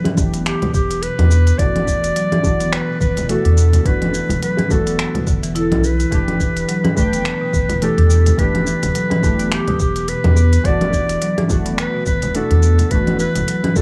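A dry excerpt of meditative, mystical organic downtempo in E minor at 106 BPM with a swung sixteenth feel, where a breathy, whispered clarinet carries a jazz-style melody with light vibrato and scooped notes over a woody marimba's delayed arpeggios, a dark, detuned chord stab pumping under chorus and delay as it moves between Em and Bm7/E, a round analog bass with a filter sweep, a soft electronic kick, a crisp-hatted organic electronic kit with cabasa, congas and finger snaps, and bright bongos and congas tucked in the background.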